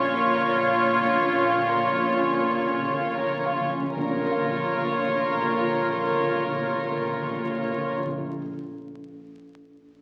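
Cinematic, emotional film score in a sorrowful, moving Bb minor, unfolding slowly in a rubato 3/4 at 55-71 BPM as it slows over the first 4 seconds. Up front, the violin section floats its sul tasto melody on a single note over a second violin line and the intimate, lightly vibrating violas. Very quiet cellos and a dark double bass section sit beneath, while hard-mallet calf-head timpani play a fill and a felt-muted upright piano murmurs in the background with audible action noise, lingering alone until 10.0 s. All of it is bathed in scoring-stage reverb and the crackle of a very old 78 rpm record.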